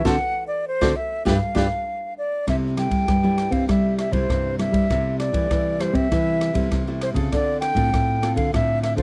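A dry, close studio sound in the manner of the 1970s frames this sunny, festive samba and choro excerpt in C major at 99 BPM. An airy wooden flute with vibrato carries the tongued melody up front, over a bright fingerpicked nylon-string guitar with audible finger squeak, a full-bodied thumb-plucked nylon-string bass guitar and an open jazz kit with dark cymbals and a boomy kick. A crisp picked cavaquinho sounds only until 1.7 seconds, and the band plays accents together until 2.5 seconds, as the chords move from D7 and G7 to C6, Am7/C and Dm7.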